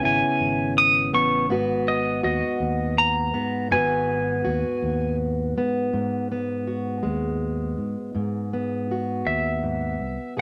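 A pedal steel guitar, played with fingerpicks, slide and volume swells, carries a clean, compressed, up-front melody over a fingerpicked plugged-in steel-string acoustic guitar with fresh strings and audible finger squeak and a punchy, amped fingered electric bass in this tender, heartfelt acoustic folk-pop ballad at 54 BPM in a straight 6/8, moving from C#m7 to G#m7 in moderate studio reverb, with the steel falling silent at 5.2 seconds and returning at 9.3 seconds.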